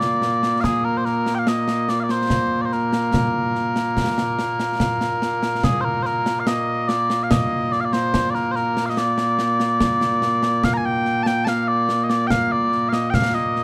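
Mellow, sweet small bagpipes carry a continuous solo melody up front from the first moment, joined throughout by concert snare and bass drum with dark cymbals, heard close and dry beneath the pipes. This is ceremonial, stirring Scottish pipe music in 3/4 at 72 BPM in Bb major, its straight feel set in light reverb with a faint mains hum. The cut-down passage states its opening phrase and then repeats it from 5.6 seconds.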